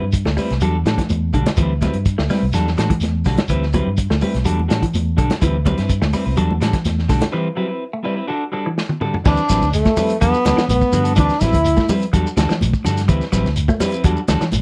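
A straight 4/4 afrobeat groove at 125 BPM drives this hypnotic passage in D mixolydian, cut from a longer piece, with a dry, close 1970s-style studio sound in a small room. Up front, a muffled vintage drum kit with a tight kick and medium-tuned snare works over hi-hat, crash and toms. A grainy shekere joins in, ringing, high-tuned congas played with hard hands sit in the background, and a dark, round fingered bass punches underneath. Two clean, picked electric guitars carry the harmony: one plays arpeggios through a phaser in the background, the other plays stabs, both circling D13sus4 and Em11 chords, with a break at 7.3 s. At 9.3 s a breathy, whispered trombone takes the melody with vibrato, shadowed by a bright tenor saxophone on a second line in the background, before both stop at 11.9 s.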